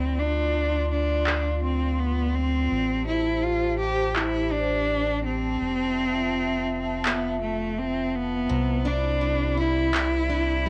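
A lightly reverberant home cassette recording gives this short excerpt of playful, pastoral folktronica a soft, worn sheen at 83 BPM in 4/4, with a gentle swing on the sixteenths. A clear, focused bowed cello carries the melody up front with vibrato. A warbling, detuned tape-like pad sustains mellow, nostalgic chords in the background, colored by chorus and its own reverb. A round, deep analog bass holds the low end up front. Electronic handclaps with a filtered, tape-worn character come in at 1.3 seconds, and a picked, plugged-in steel-string acoustic guitar adds arpeggios from 8.5 seconds. The harmony moves through Dm7, Am7 and Fmaj7 before settling on Cmaj9.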